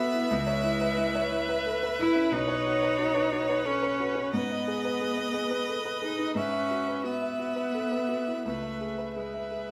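Recorded live in one large studio with moderate reverb, this fragile, longing neoclassical fragment in 3/4 at 88 BPM drifts with rubato as an up-front violin, rich with vibrato, carries the melody over a focused cello second line, a boxy, short-sustained grand piano accompaniment and a smooth, bowed viola, the harmony passing through C#m7, Badd9, G#m and Eadd9/G# before returning to C#m7.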